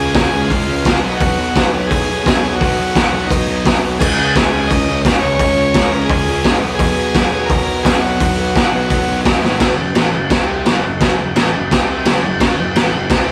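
A buzzy vintage combo organ carries the melody over a thick, double-tracked fuzz guitar riff and a growly, punchy overdriven bass in this swaggering, raw garage rock excerpt, pushed by an up-front, boomy, gritty drum kit whose fill at 9.4 seconds leads into a new section at 9.6 seconds, just after the organ drops out at 9.2 seconds, in a rough rehearsal-room recording with light reverb.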